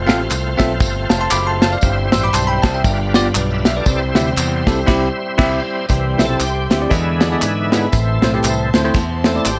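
This is a short, uptempo gospel excerpt in a swung 4/4, hopeful and jubilant in mood. A full, shouting tonewheel organ holds sustained chords through a slow rotary speaker with light overdrive, chorus vibrato and audible key click. Beside it, a bell-like tine electric piano plays accompaniment, and a punchy fingered electric bass anchors the low end. A modern studio kit with dark cymbals, a medium-tuned snare and a tight kick drives the groove, joined by an egg shaker and close, dry group handclaps. After a band accent around 4.9 seconds, the organ takes a solo at 5.9 seconds, and a lush, woody string section enters softly behind it with bowed, sul tasto chords. The whole piece sits in light reverb and small-room ambience.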